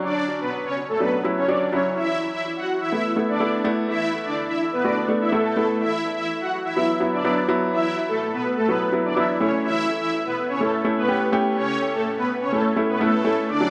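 An echo-heavy mix bathed in moderate spring reverb sets the tone for this summery, carefree pop excerpt at 125 BPM in a straight 4/4. Up front, a filtered supersaw swell carries the melody with detuned, unison sawtooth voices over a sine sub octave, its soft attack and evolving filter swell colored by phaser and tape echo. Alongside it, a present baby grand piano, also touched with tape echo, accompanies through a progression from Dmaj7 to Asus2, Esus2 and finally A.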